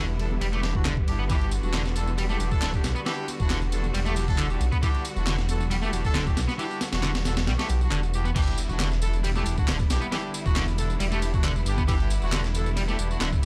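A straight 4/4 breakbeat groove at 136 BPM drives this energetic, swaggering breaks cut in E minor, built on a thumpy, tape-warm sampler-style kit with crash, ride and snare, layered electronic handclaps and tambourine, and a very quiet, high-tuned conga part that plays until 7.8 seconds. Up front, a thick, menacing detuned saw bass with tube saturation sits under a double-tracked distorted guitar riff, punchy horn stabs and sustained bowed string chords. The horns and strings both carry 12-bit sampler grit, with analog delay on the horns and guitar and sidechain pumping on the strings. The kick drops out at 7.5 seconds before a drop lands at 8.4 seconds with a very quiet electronic impact, all in a dry, gritty hardware sound, and the piece is cut from a longer track.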